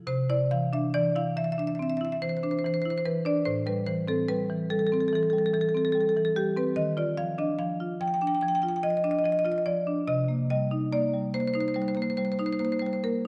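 A contemporary classical piece for solo marimba, heard in a short passage cut from a longer work, moves at a rubato 72 BPM in 4/4 with a playful, flowing character. The marimba, struck with medium hard mallets on padauk bars, sounds woody, bright and percussive, placed up front and spanning A2 to G5. Its harmony travels from Cadd9 through Am7 to Ebmaj9 at 6.8 seconds, settling on Cm7 at 10.1 seconds in a C major setting. A wet concert hall reverb with a 1.8-second decay surrounds the instrument, and the overall production leans dark and warm. The solo marimba carries the whole passage, running to 13.3 seconds.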